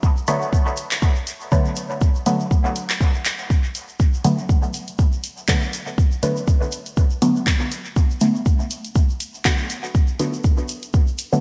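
A muted, detuned dub chord stab with a fast-attack filter pluck sits up front, coloured by phaser, sidechain pumping and dub echo, over a deep, layered electronic kick, a deep house kit of handclaps and dark hi-hat in gated reverb and dub echo, and a grainy tube shaker, giving this meditative, nocturnal dub techno excerpt a bright 1980s-style digital sheen within a lush hall reverb.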